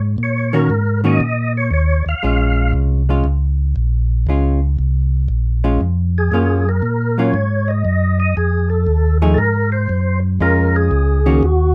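A percussive, lightly overdriven tonewheel organ carries the melody through slow rotary speaker and chorus vibrato, playing from 0.2 to 2.7 seconds and returning at 6.2 seconds, over a round, dark organ bass line and clean, picked hollow-body jazz guitar accompaniment in this soulful, late-night soul jazz organ trio excerpt, swung at 117 BPM in Bb minor with light reverb.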